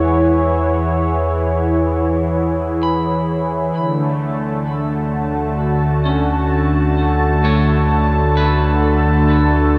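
In a straight, unhurried 4/4, this luminous ambient fragment from a longer piece sets a detuned, chorus-laden analog pad up front, its sawtooth chords warbling with a vintage haze over a round sine sub bass. An electric guitar at the edge of break-up fades in across the full 9.8 seconds, its twangy picked arpeggios trailing into a diffuse ambient delay, while the harmony moves from Eadd9 to D at 3.8 seconds. A vast cathedral reverb and a cassette-tape grain wrap the whole in a warm, echoing glow.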